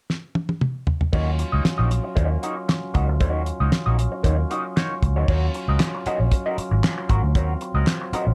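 A straight 4/4 funk groove at 116 BPM opens with a damped 70s drum kit playing a fill from 0.1 seconds, its fat snare, tight kick, dark cymbals, hi-hat, toms, crash and handclaps sounding dry and up front. At 1.1 seconds the band lands together on an Ebm7 chord in E-flat dorian, setting a sly, cool mood. A vintage muted fingered electric bass sits prominently in the low register, round and foam-muted, while an electric guitar through a small old amp plays accompaniment with wah, its tone slightly broken-up, picked and lo-fi. A percussive tonewheel organ holds sustained chords underneath, lightly overdriven with subtle chorus, third harmonic percussion and audible key click. The production is dark and warm with light reverb, and this short excerpt is cut from a longer piece.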